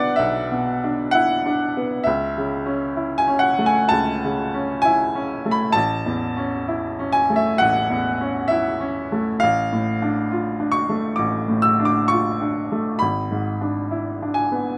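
A bright, woody upright piano sits up front in this tender, serene romantic nocturne, played alone in A major at 66 BPM in 4/4 with a gently rubato feel, spanning from deep bass up to high treble. Its harmony settles from an opening E7 onto A major, darkens briefly with a D minor chord over A around 9.4 seconds, and leans back toward E7 as the passage breaks off at 14.8 seconds, cut from a longer piece. Close, detailed miking and light reverb give the polished instrument an intimate presence.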